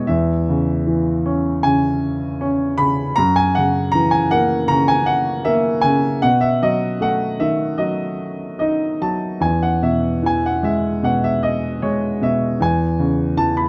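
A lone concert grand piano opens on an E6 chord, setting a tender, calm mood for this short classical passage cut from a longer piece. The playing is lyrical and freely timed, moving at around 77 BPM in 4/4 with loose, rubato beats that give the phrases room to breathe. The harmony in E major moves through F#7 at 3.2 seconds and B7 at 6.2 seconds, settles on E at 9.4 seconds, then returns to E6. The piano spans E2 to B5 and has a warm tone with deep bass, a slightly boxy character and an up-front presence. Close, detailed microphones and light reverb keep the sound intimate, and the instrument is tuned to A4 = 441 Hz.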